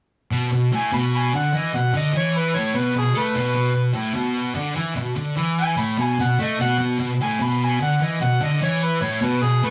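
A thick, fuzzy electric guitar sits up front from 0.3 seconds, its distorted, picked riff double-tracked and anchored on an Asus2 chord in the low register. This short rock excerpt moves at 148 BPM in a straight 4/4, with a raunchy, swaggering mood. At 0.8 seconds a harmonica enters with a jazz-style solo melody, its overdriven tone carrying vibrato and sounding distant and roomy behind the guitar. Both parts carry through to the end at 9.7 seconds. The sound is a rough rehearsal-room recording with a warm saturation and a short, wet studio ambience.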